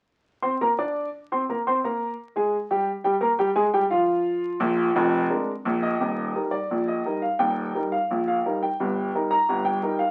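Crackling with the surface noise of a very old 78 rpm record and set in a snug club reverb, this playful, lively ragtime excerpt in 2/4 features a solo upright piano, woody and smooth with a long sustain, sitting up front and ranging from deep bass to bright treble as it moves from minor-tinged harmonies into a settled major passage at 6.0 seconds.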